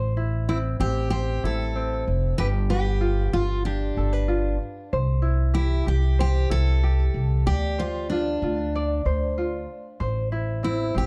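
A fingerpicked tenor ukulele and a woody, pizzicato upright bass open this heartfelt, carefree pop piece, with the bass sitting up front as the chords move from Am through G7, C6 and Dm7 and back to Am. At 0.5 seconds a full-bodied, picked jumbo steel-string acoustic guitar enters with the melody, its line touched by tape echo. Light reverb and a dark, warm production shape this short cut from a longer piece.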